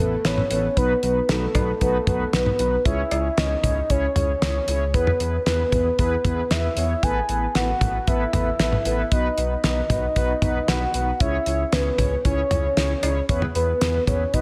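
A soft, octave-layered synth lead carries the melody in this cool, melancholic synth-pop excerpt, its round, dark tone shimmering with chorus, tremolo, vibrato and a digital delay. Beneath it, mellow synth brass holds brassy, sustained chords colored by chorus and a filter sweep, while a smooth synth bass with ring modulation anchors the low end. A damped 70s drum kit enters at 0.2 s and sits up front, with a fat snare, tight kick, hi-hat, toms and cowbell, all treated with gated reverb. The harmony cycles twice through Asus2, B, C#m and E in a straight 4/4 feel. Light reverb and a studio ambience surround the mix.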